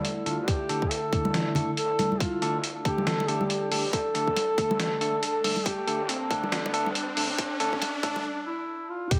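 A wet digital room surrounds this brief, heavy and brooding fragment of deep dubstep, cut from a longer piece and moving at 139 BPM in a swung, half-time 4/4 feel built on a D chord. Up front, a compressed, pitched-down sampler-style kit of hi-hat and tape-warm snare plays from the start, a tight, layered electronic kick joins it at 0.5 seconds, and bright, close congas played with hard hands arrive at 1.2 seconds. Beneath them, a resonant drone of moving overtones sits in the background with chorus and phaser, and a very quiet, saturated wobble bass of detuned sawtooth and sine tones holds the low end until 8.2 seconds. A mellow duduk carries the folk-style solo melody with vibrato and dub echo, and a bell-like tine electric piano adds clean, low-passed stabs that also trail into echo. The whole passage is a build-up under a sweeping filter, with a background riser and sub drop rising from 4.5 seconds before a short break at the close.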